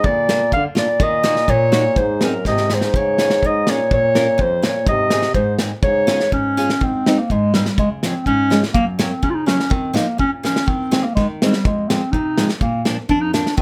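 Festive and jolly, this alpine folk dance-band excerpt moves in a straight two-beat metre and is cut from a longer piece. A dark clarinet carries the melody up front, its classical-style tone sounding distant and roomy through a plate reverb. A warm euphonium plays a classical second line beneath it, dropping out at 6.3 seconds and returning only at 13.6 seconds. Picked steel-string acoustic guitar supplies the accompaniment with audible finger squeak and an auditorium-like ring. A loose drum kit with a tight kick, medium-tuned snare and hi-hat sits forward in a pumping small-room sound, adding occasional fills. The tune shifts key as its second section begins at 6.8 seconds, all set in a moderate small room.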